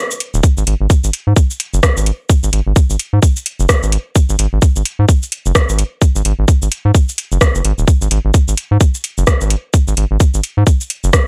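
An overdriven electronic kick drum sits tight and up front, driving this quirky, hypnotic minimal techno excerpt at 129 BPM in 4/4 with a 59% swing on the sixteenths. Beneath it a round, deep analog bass built from square and sine waves, wave-folded and saturated, ranges from D#1 to G#2 with a fast attack and sidechain pumping, entering at 0.3 seconds. A booming analog drum machine adds metallic hi-hats, cabasa and rim clicks with a tape-warm, large-room character, all captured in a dry, gritty hardware recording.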